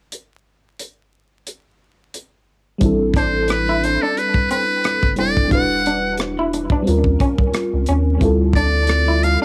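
R&B with a neo-soul lean, this sultry, soulful clip moves at 89 BPM in 4/4 with a gentle sixteenth-note swing, centred on A minor. A tight funk drum kit opens alone, its hi-hat, rim click and tight kick sounding dry, airy and up front. At 2.8 seconds a rubbery, hollow square bass enters with a dark, resonant filter pluck and transformer saturation, joined by an FM electric piano with a soft pad layer whose lush, dreamy chorus and warbling vintage tone carry the chords from Am11 through Em9 and D#13 to Dm11. From 3.2 seconds a trumpet with a metal mute takes the melody, buzzy and thin with light vibrato and placed up front, while an electric guitar through a small old amp adds a quieter second line, slightly broken-up and compressed with analog delay. Light reverb, cassette-tape colouring on several parts and vinyl crackle give the homemade sound a lo-fi haze.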